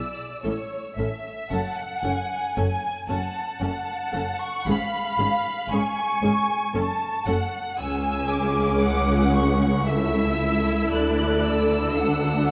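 A slow, tender romantic movement for string orchestra, cut from a longer piece, moves in a rubato 3/4 at about 57 BPM through chords such as F#m, C#7/G# and A/C# before arriving on D at 10.9 seconds. Two violin sections open together at the start, one carrying a smooth, vibrato-rich melody high in the register and the other a lush, expressive second line. Violas, a woody, dark cello section and clear, focused double basses join at 0.4 seconds to fill out the harmony beneath them, all set in the moderate reverb of a scoring stage.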